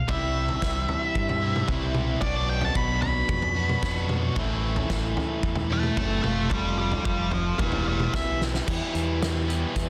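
This dense, heavily limited modern master puts a moody, bittersweet indie rock excerpt in a studio space, moving at 112 BPM in a straight 4/4. Up front, a dark octave-fuzz lead guitar carries a solo melody between C5 and B5 from the start until 8.4 seconds, its distortion trailed by slapback echo. Beneath it, a biting overdriven guitar and a bright, hollow-bodied semi-hollow guitar, set further back with subtle chorus and slapback echo, both play picked riffs. A round, dark fingered bass anchors the low end. Across the excerpt the harmony moves through C, Bm, Am, F and Em7. The loose indie drum kit sounds distant and roomy, with dark cymbals, a fat snare and a tight kick, and it plays a fill at 8.4 seconds leading into a brief new section at 8.7 seconds.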